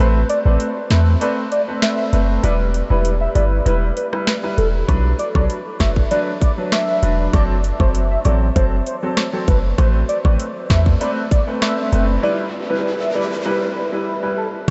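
Bouncy and hypnotic, this dancehall cut from a longer piece moves at 98 BPM in a straight 4/4, sitting in E minor and cycling through Amadd9, Em, Bm and F#dim. A velvety, detuned synth lead carries the melody with chorus, vibrato and a diffuse ambient delay, while a clear concert grand piano supplies accompaniment with audible action noise, lush chorus and sidechain pumping. Underneath, a deep, boomy 808-style bass sits up front beside an electronic island pop drum kit with a tight kick, sharp snare, metallic hats, rim clicks and crashes, the kit entering at 0.3 seconds. Very quiet woodblock and cabasa, with maracas and group handclaps, join at 4.9 seconds, and an electronic riser rises into view from 10.9 seconds. The whole mix is dreamy and soaked in a huge ambient reverb, its highs rolled off for a hazy, enveloping sound.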